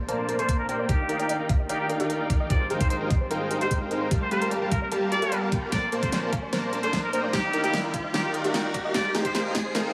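A half-time future bass groove at 149 BPM drives this bright, lush build-up, with a knocking, up-front electronic kick, a pop kit's fat snare and crisp hats, and a drum fill from 5.7 seconds, while a deep, boomy 808-style bass sits barely audible underneath. A thick, detuned supersaw riff with 12-bit sampler grit, sidechain pumping and a low-pass filter sits up front in the mix. A nasal, jazz-style muted trumpet melody with vibrato, dub echo and a filter sweep floats over soft round pluck arpeggios, a very quiet ethereal pad, and a background riser, moving through Bbmaj9, Ebmaj9, Abmaj13 and Gm9 in a huge, ambient reverb.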